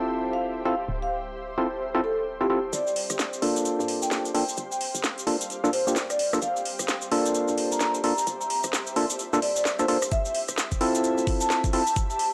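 UK garage in a bouncy, soulful two-step at 130 BPM in G dorian, this gritty cassette-toned excerpt opens on Dm9 with hollow, chorused organ stabs under a filter sweep, a dark knocking FM bass and a cloudy granular pad, joined at 0.3 seconds by a mellow, ringing soft-mallet vibraphone melody with analog delay, before a build-up from 2.7 seconds brings the garage kit's cracking snare and metallic hats, a grainy tube shaker and a move to Gm9, with an up-front electronic kick arriving at 10.1 seconds as the harmony returns to Dm9.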